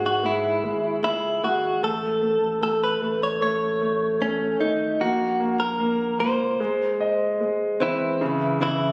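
Recorded on a phone in the room, this short cut from a longer pop piece carries a light studio reverb. A clean electric guitar, recorded direct, picked and compressed, sits up front carrying the melancholic melody, with a delay trailing its notes. Beside it, a bright concert grand piano supplies the accompaniment with a brilliant, polished tone and deep bass, also placed prominently. Underneath, a thick, saturated sub bass with a sine-like body and fast attack sustains low notes until it stops at 6.6 seconds. The harmony moves from C#m/G# through A and A#madd9 to G# before settling on C#m at 8.2 seconds, lending the passage an emotional ache.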